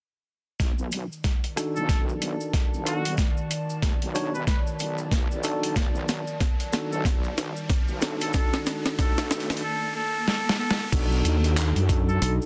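A heavy, saturated wobble bass, a gritty pitched-down boom bap kit with handclaps, rim clicks and a medium-tuned snare, a thumpy electronic kick and a grainy cabasa open this playful, swaggering glitch hop excerpt at 0.6 s on a B7#9 chord at a swung 93 BPM. A nostalgic warbling lo-fi pad with phaser, clean tine electric piano stabs and a clear, vibrato-laced jazz trumpet solo with 12-bit grit and digital delay join soon after. A background riser enters at 2.8 s and builds to the drop at 10.9 s, and a bright, growly fingered electric bass punches in at 12.2 s, all within a dense, heavily limited modern master.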